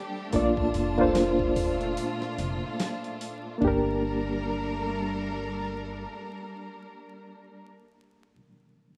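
Brooding and smoky, this slow trip hop excerpt at 73 BPM in G minor, with a swung 16th feel, sets a reedy electric piano up front, its fast tremolo and tape echo colouring the accompaniment, over bowed strings whose biting vibrato carries 12-bit sampler grit, a dreamy reversed texture drifting in the background through its own reverb, and a woody pizzicato upright bass with tube saturation; a gritty, pitched-down boom bap kit with a thumpy kick plays only from 0.3 to 3.8 seconds, while the harmony moves from Bb to Gm at 3.6 seconds, all wrapped in a rough home-demo mix with vinyl crackle and light reverb.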